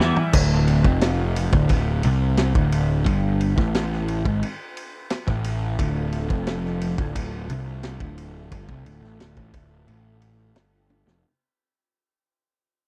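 A dry, close 1970s-style studio sound frames this hypnotic, dark psychedelic rock excerpt in D dorian at 88 BPM, fading out from 0.3 seconds onward over a Dm chord. A double-tracked semi-hollow electric guitar plays a clean, compressed, hollow-body riff through flanger, while an up-front fuzz bass growls round and overdriven beneath it, and a gritty vintage drum kit with a punchy kick, high-tuned snare and dark cymbals opens and closes with fills. A mellow combo organ with heavy vibrato and lush chorus sits in the background, holding sustained chords that return at 5.8 seconds.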